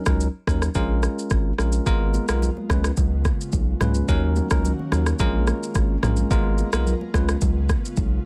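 Dry and close-sounding, this smooth, hypnotic afrobeats excerpt opens with a bell-like, bright tine electric piano over a thick, saturated sub bass and an up-front electronic drum kit of deep kick, rim click, shaker and toms roughened by vintage 12-bit sampler grit, before a soft, breathy pad with chorus drifts in the background from 1.9 seconds and very quiet, high-tuned acoustic congas join at 2.1 seconds.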